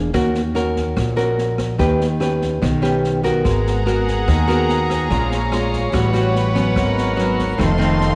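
Fingerpicked nylon-string guitar sits up front in this wistful, smooth bossa nova fragment, cut from a longer piece, moving at 145 BPM in G# minor through chords such as D#m7, G#m9 and A13. A woody, thumpy pizzicato upright bass on gut strings and a dark jazz kit with a boomy kick, high-tuned snare and rim clicks support it. At 3.4 s, a bowed string section enters with soft-attack, sul tasto chords that feel pure and floating, all set in a moderate echo-chamber reverb with studio ambience.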